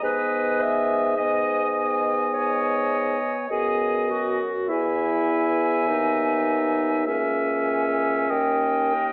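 Melancholic and yearning, this slow romantic movement for wind quintet in G# minor moves at 46-53 BPM in 4/4 with a rubato feel, its short 9.1-second span cut from a longer piece and passing from G#m through E and A#m7b5/C# to a closing D#7. A pure, distant flute carries the melody with vibrato over a clear, up-front oboe on the second line, while a clear, roomy clarinet and a mellow French horn supply accompaniment and a bassoon with light vibrato anchors the bass. Everything sits in a moderate recital hall reverb and comes through worn, warbling old cassette tape with pitch drift and an AM radio sound.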